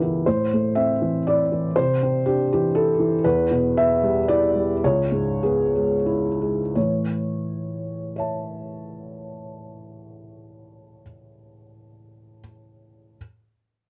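A soft, felt-muted upright piano plays alone from the first moment in this intimate, wistful neoclassical minimalist fragment, cut from a longer piece and moving in a rubato 3/4 that drifts between 84 and 123 BPM, easing down between 2.5 and 6.7 seconds as the harmony passes from A minor through Cadd9 and E minor to C#m7. At 6.7 seconds a new passage opens on an A major chord. The mellow piano sits up front with audible action noise and a cassette-tape coloring, set in a moderate studio reverb that suits its home-recorded character.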